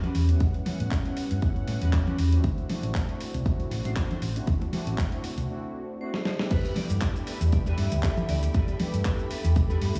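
A punchy, up-front electronic kick drives this feel-good, groovy nu-disco excerpt at 118 BPM in 4/4, with a light swing on the sixteenths, alongside a gritty, compressed sampler-style kit of snare, hi-hat, shaker, handclaps and crash cymbal, plus close, dry congas played with hard hands. Underneath, a round, dark hollow-body electric bass sits up front, while mellow sawtooth synth brass with a filter sweep, chorus, sampler grit, tape echo and sidechain pumping carries the accompaniment over chords moving from A13 to D7 in G major. A clean, picked electric guitar riff with analog chorus and tape echo stays in the background. After a break from 5.5 seconds and a short drum fill, the drop arrives at 6.5 seconds on a G69 chord, where a studio string section enters with expressive vibrato and portamento, and a bright, ringing vibraphone melody with analog delay, having come in at 6.0 seconds, floats behind it. 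The mix is fairly dry, with small room ambience and the air of a bare stone room.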